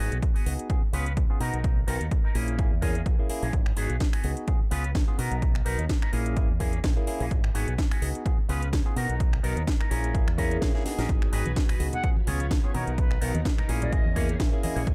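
Swung sixteenths and a punchy, up-front electronic kick drive this funky, sensual filtered disco house excerpt, where a cracking snare, finger snaps and metallic, overdriven hats sit alongside a bright fingered bass with tube saturation, a barky tine electric piano through a phaser and a dark envelope-filtered guitar riff (bass, piano and guitar each low-pass filtered and pumping), before a drum fill ushers in very quiet, lush string machine chords with close, faint shaker and congas at 11.1 seconds, an airy, distant flute melody with vibrato at 11.9 seconds, and a clean guitar fill at 13.9 seconds, all in a dry mix.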